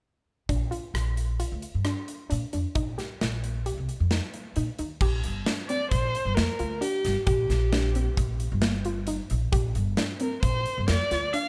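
Lightly reverberant, this excerpt from a longer progressive instrumental moves at 133 BPM in 5/4 with a straight, driving feel and a bright mood in Bb major, tuned to A4 = 435 Hz. From 0.5 seconds a big rock drum kit sits up front with a punchy kick, a medium-tuned snare, rim clicks, hi-hat and crash cymbal ringing in a large room. Beside it, a pizzicato upright bass with steel strings gives a woody, up-front low end. Behind them, a soft, round synth pluck with a fast attack and short decay plays arpeggios, shaded dark by its filter and coloured with chorus and delay. At 5.7 seconds a single bowed viola takes the melody, dark and expressive, with vibrato, portamento and a smooth top, its line trailed by delay. The harmony moves from Bb through Eb/Bb, Bb6 and Gmadd11 before settling back on Bb6.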